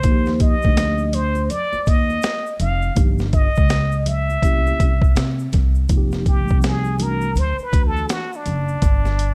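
Jazz-hop with a mellow, smoky mood, this hip hop excerpt moves at 82 BPM in 4/4 with a 62% swing on the 16ths. A gritty, compressed, sampler-style boom bap kit sits up front, its pitched-down sound built on a thumpy kick, a high-tuned snare and hi-hat. A woody upright bass with steel strings is plucked pizzicato beneath it, while a clean tine electric piano, heard through its built-in speakers, lays down chords such as Ebmaj7, Gm7b5 and C7b9 before dropping out at 8.2 seconds. A clear, present trumpet with a plunger mute carries the melody in a jazz style, its wah-wah tone marked by light vibrato and a slapback echo, and it takes a muted solo from 5.9 seconds as the harmony shifts toward F5, D and G5. Bright tube shaker and hard-hand congas sit in the background in a small room, and studio reverb gives the whole production a dark, warm finish.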